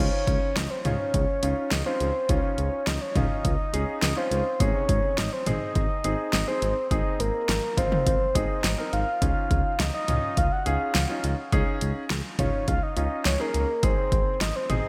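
Nostalgic and upbeat, this 104 BPM synth-pop piece in Db major, cut from a longer track, sets a soft, round octave-layered synth lead with chorus and delay over clear baby grand piano accompaniment and a smooth, mellow sawtooth-and-triangle synth bass, while a deep house drum kit with a punchy kick, fat snare and gated reverb sits up front from 0.3 s, all bathed in a lush hall and bright 1980s-style digital production as the harmony moves between Dbadd9 and Ab.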